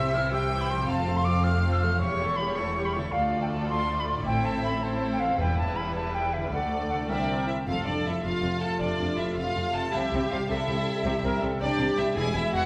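Heard in a wet, reverberant concert hall, this adventurous, triumphant cinematic passage in 12/8 sets a lush, vibrato-rich violin melody over a smooth second violin line. Beneath it sit clear viola accompaniment, quiet, ringing fingerpicked harp arpeggios and a focused bass of cellos and double basses, with hard-mallet timpani in the background near the start and a pure, distant flute that stops at 7.7 s, when dark trombone chords enter.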